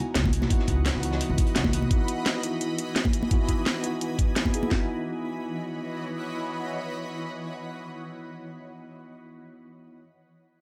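Melancholic and rolling, this liquid drum and bass excerpt at 171 BPM in C# minor rests on a C#m11 chord voiced by a mellow tine electric piano with dub echo and a shimmering, ethereal pad treated with chorus, phaser and sidechain pumping. A woody, thumpy pizzicato upright bass drops out at 1.9 s, just after a dark, gritty breakbeat kit in the background falls away at 1.8 s, while two up-front electronic kits with knocking kick, cracking snare and bright hats run until about 4.8 s beside bright, dry congas. The keys and pad then carry on alone in a small, lightly reverberant room until the pad stops at 8.1 s, and the piano continues by itself until it stops at 10.0 s.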